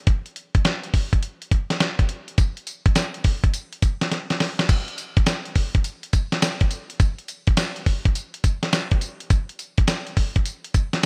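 A swung sixteenth-note groove in 4/4 drives this punchy, bouncy R&B fragment, played on a dusty, sampler-style soul drum kit with a thumpy kick, fat snare, hi-hat, crash cymbal and tambourine. The compressed, gritty kit sits up front with vintage 12-bit sampler crunch, in a dry, bright 1980s-style digital mix. A drum fill from 4.1 s leads into a new section at 4.7 s, carrying on until the cut at 11.1 s.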